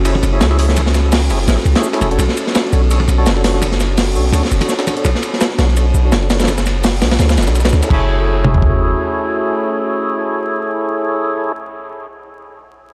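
This drum and bass excerpt with a jungle edge runs at 168 BPM in F# minor, frenetic yet nostalgic, with a slight swing on the sixteenths and tuning a touch below standard pitch. Up front, a crunchy, saturated breakbeat kit of kick, snare, hi-hat, ride, crash and toms plays until 8.7 seconds, its dark cymbals and rolled-off top giving it a gritty character, while a compressed, sampler-style kit of hi-hat, shaker and high-tuned snare sits in the background. A deep, mellow 808-style bass carries long decaying sine notes up front until 8.9 seconds. A fat, lightly overdriven tonewheel organ plays percussive stabs through a slow rotary speaker with dub echo and a filter sweep during the first 7.9 seconds, as a warbling, lo-fi pad holds sustained chords beneath. The harmony moves from F#m7 to Bm9 and returns to F#m7 at 7.9 seconds, where the drums and bass soon drop away, leaving organ and pad to carry the final seconds. 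The whole has a dry, hardware-recorded sound with transformer saturation and vinyl crackle.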